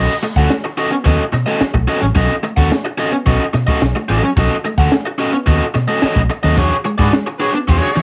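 A straight 4/4 funk groove, gritty and energetic, is driven by a compact cocktail drum kit with a punchy kick and high-tuned snare, a round, foam-muted vintage fingered bass, an up-front biting overdriven guitar and a dark, clean mellow electric guitar riff tucked in the background, set in light reverb with a home cassette-recording character, until a band accent at 6.6 seconds moves the harmony from B9 to E13 and a distant, roomy horn section with light vibrato enters at 7.0 seconds for the closing moment of this excerpt.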